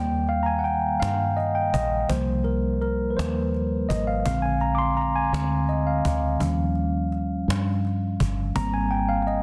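Slow gospel in 6/8 at 56 BPM, this brief excerpt of a longer piece feels jubilant and soulful. A mellow tine electric piano sits up front, clean and direct, carrying the lead across the full 9.4 seconds while also supplying the chords, which move from Eb through C7sus4, Bb7 and Eb7 before settling on Abmaj7. Underneath, a deep dub fingered electric bass gives a dark, round, punchy low end, its foam-muted tone heard direct and amped. A snappy acoustic cajon with snares enters at 0.3 seconds, sitting further back with a live room sound. Light reverb surrounds the parts, and the whole is delivered with a dense, heavily limited modern master.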